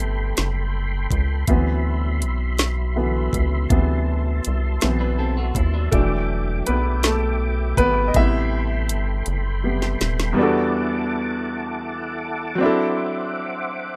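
Slow, sultry six-eight R&B in E minor at 54 BPM, yearning through chords like Am9, D13 and Em9, where a clear, up-front baby grand piano takes a solo over a lightly overdriven tonewheel organ with chorus vibrato, key click and slow rotary speaker, a rubbery, hollow square bass, and a smooth electronic drum kit with knocking kick, woody snare and dark hats that plays a fill from 9.3 to 10.4 seconds before bass and drums drop out, while a slightly broken-up picked electric guitar adds a brief second line from 5.0 seconds, all in a dry, rough home-demo mix cut from a longer piece.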